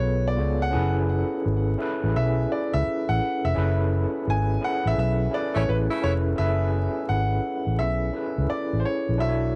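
R&B at 85 BPM in F# minor with a smooth, late-night mood and a swung 16th feel, this short cut opens on a brilliant grand piano melody with a C#7b13 chord resolving to F#m7, over a gritty, barky overdriven tine electric piano with medium tremolo, a round, foam-muted fingered electric bass up front, and a tight, edgy saxophone section stab at 5.5 seconds, all wrapped in the vinyl crackle of a home cassette recording.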